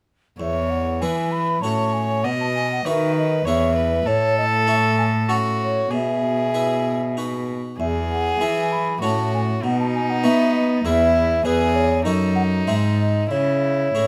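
Flowing and serene, this baroque-style sonata movement with continuo moves in triple metre with a straight feel, cut from a longer piece. A close, up-front solo violin carries the melody with a nasal, gut-string tone and an airy bow, played in period style. Beside it a baroque flute weaves a second line, its wooden voice hollow and mellow, with gentle vibrato, a soft attack and rolled-off highs. Underneath, a single bowed cello sits up front on the bass, dark and reedy with a smooth top, while a bright, plucked French-style harpsichord with one set of strings fills in the accompaniment a little more quietly. The four parts play together from 0.4 to 14.1 seconds in light reverb, the harmony settling repeatedly on the home chord before turning toward C#m at 13.3 seconds.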